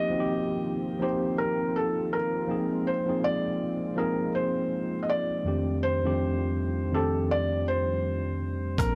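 Lightly reverberant and intimate, this nostalgic, mellow lo-fi hip hop excerpt at 81 BPM in a swung 4/4 opens on a soft, felt-muted upright piano melody with audible action noise, up front beside a worn, slightly out-of-tune tine electric piano, both low-pass filtered, over a smooth, detuned sawtooth pad with chorus in the background, moving through Eb69, Ab69 and F13 before a gritty, thumpy sampler-style drum kit, a round, dark fingered electric bass and a faint tube shaker arrive at 8.8 s.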